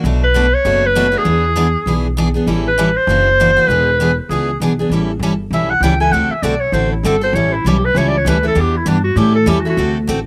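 Picked, full-bodied steel-string acoustic guitar and a woody, thumpy pizzicato upright bass open this charming, playful excerpt of jazz manouche swing at 197 BPM in A mixolydian, with a forceful, vibrato-rich clarinet carrying the melody through a slapback echo from 0.2 seconds and taking a solo from 4.9 seconds, all captured dry in an outdoor setting.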